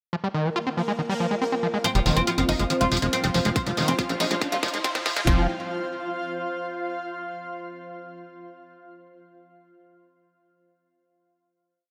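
Set in a lush digital hall, this short psychedelic trance piece at 140 BPM feels alien and hypnotic, opening on a pulsing, detuned gated texture holding a high note beside a screaming, squelchy acid line that is distorted and resonant, both breathing with sidechain pumping. A blurred granular cloud pad of slowly shifting chords drifts in at 1.4 seconds, and from 1.8 seconds the build brings in a bright, woody oud repeating a riff over a pedal note with phaser and delay and programmed electronic hi-hats, followed at 2.0 seconds by a tight, saturated sequencer bass rolling in sixteenths, while filter sweeps open the acid line and the texture. A tight, tape-warm four-on-the-floor kick and drum fill arrive at 3.6 seconds with a very quiet riser, before the pad rings on alone over the final chord to 6.9 seconds.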